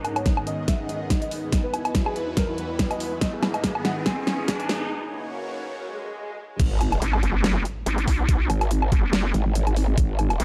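Half-time 4/4 groove with a 16th-note swing drives this aggressive, chaotic heavy wobble dubstep fragment, where a dark, boxy grand piano with audible action noise, low-pass filtering and dub echo carries the melody over a lush, phased supersaw pad, a cloudy granular pad, background risers, and a tape-warm kit with a huge snare, bright hats, woodblock and a knocking kick, building through a filter sweep and a break until the drop at 6.6 seconds unleashes an impact, a saturated, detuned growl bass and, from 7.0 seconds, a nasal vowel-sweep wobble bass, both overdriven and up front.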